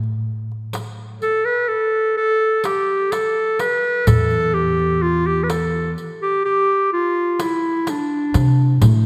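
An upright bass and a darbuka open this Turkish makam ensemble excerpt together, the bass plucked with a woody, thumpy pizzicato and the clay-shelled darbuka struck with hard hands in a close, dry sound. At 0.7 seconds a riq joins with bright jingles, sitting well back beneath the other parts. A clear, classical-style clarinet enters at 1.2 seconds as the solo voice, up front and singing a longing line in the ussak makam that stays within its middle register. The 10/8 metre lends the passage a hypnotic feel. A moderate concert hall reverb surrounds the ensemble, and the clip ends at 9.1 seconds, cut from a longer piece.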